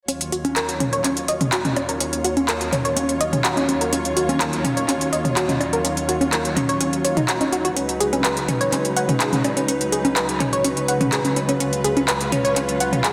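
A straight 4/4 pulse at 125 BPM drives this bittersweet, dreamy progressive house passage in Eb minor, with a crisp, tape-tinged pop drum kit of handclaps and hi-hat up front, and overdriven electronic congas, toms and bongos entering at 0.4 s with a roomy, analog grit. A glassy, detuned wavetable pluck spins chorused arpeggios through tape echo under a filter sweep, while a dark, woody string section holds bowed, vibrato-laden chords from Ebm7 to Db7sus4 at 7.8 s. Cut from a longer piece, it sits in a lush hall reverb with a dense, heavily limited modern master.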